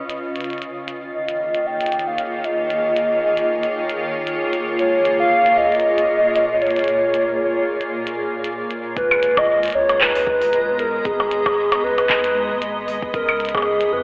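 IDM with an eerie, intricate mood: a blurred, cloudy granular pad with vintage 12-bit sampler grit and its own reverb holds sustained chords beneath a warbling, nostalgic square-and-sawtooth lead carrying chorus, vibrato and analog delay, while a glitchy, up-front kit of clicky hats, handclaps and percussion blips ticks with a light swing, and at 9.0 s a deep electronic kick arrives alongside a dark, round analog bass with tube saturation sitting in the background, the whole mix soaked in a dreamy hall reverb and filtered to a telephone-like tone.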